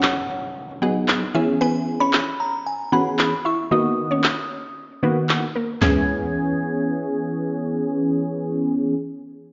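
Opening with a faint downlifter and a filter sweep over a punchy deep house kit of handclaps, snare and toms, this bittersweet, energetic dance-pop excerpt at 114 BPM in C# dorian layers a glassy, warbling FM synth bell with chorus and tremolo above a woody, round mallet-like pluck trailed by tape echo, while a funky, detuned sawtooth polysynth comp sits up front through G#m7, C#m7 and Bmaj7 in a large, dark-topped studio reverb, the drums dropping away at 5.9 s and the pluck at 7.4 s.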